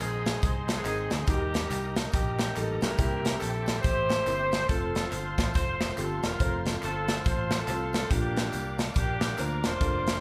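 A clear, punchy horn section carries the melody up front in this jubilant, reverent uptempo gospel excerpt at 141 BPM with a swung feel in Bb major, backed by a woody upright piano, a reedy tonewheel organ with fast rotary speaker, overdrive and chorus vibrato sitting in the background, a fingered electric bass, a tight, airy acoustic drum kit of kick, snare and hi-hat, and very quiet handclaps and tambourine, all played live in one room with moderate large studio reverb as the chords move from Ab through Eb, C7 and F to Bb at 8.1 seconds.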